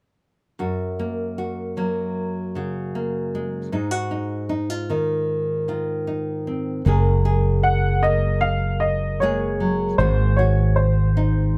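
A close, detailed recording with little reverb opens this intimate, heartbroken folk excerpt, where a full-bodied, fingerpicked nylon-string guitar carries the accompaniment through chords of Gbadd9 and Ab7. At 6.9 seconds a round, punchy fretless electric bass joins low beneath it, and at 7.6 seconds a woody, slightly detuned upright piano with short sustain takes up the melody in its upper range.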